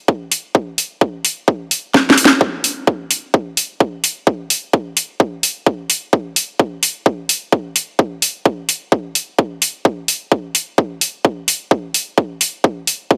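A punchy, overdriven electronic kick drum opens this short festival progressive house fragment, with its low end trimmed by a high-pass filter. A house drum kit joins almost at once, its cracking snare and bright hi-hats also overdriven and up front, and a drum fill arrives at 1.9 seconds. Light digital ambience surrounds the layered, straight 4/4 groove, giving the piece an emotional, euphoric lift.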